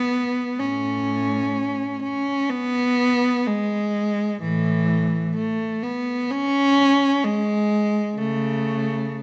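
Close, detailed microphones and light reverb put a single bowed cello up front in this brief 9.2-second cut from a longer classical piece, a baroque-style suite movement for the unaccompanied instrument. The cello sounds warm and expressive, with soft attacks, vibrato and portamento, moving between A2 and C#4 in an unhurried 4/4 at 64 BPM. Its rubato gives the music a flowing, dance-like feel.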